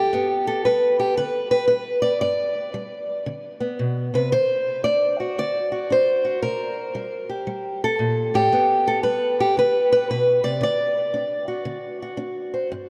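Soaked in a huge, dreamy reverb with a diffuse ambient delay, this short cut from a longer acoustic country blues piece in G major features a dark, boxy old ladder-braced acoustic guitar, fingerpicked up front with audible finger squeak, swinging in a laid-back, soulful 4/4 at 114 BPM through G, D7, C5, G and D over its 12.9 seconds.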